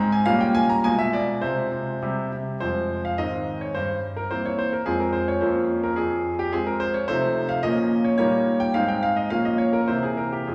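In a 2/4 at 106 BPM, the pulse bends with a free rubato, giving this classical-period piano sonatina in F minor a dramatic yet elegant poise. A solo concert grand carries the whole fragment, cut from a longer piece, ranging from F2 up to Bb5, with a brilliant, polished tone, deep bass and long sustain, and the audible noise of its action close at hand. The opening bars lean on tense diminished harmonies, Gdim/Bb and Bdim7, before settling onto Fm/C and an open C5 chord. At 2.6 s a new passage begins on F minor, moving through Ab, C7/G, Bbm/F and F7/C, then Bbm and Eb7/Bb, before arriving on C7 at 9.9 s. The instrument sounds intimate and present, set within a wet recital-hall reverb heard from further back in the room.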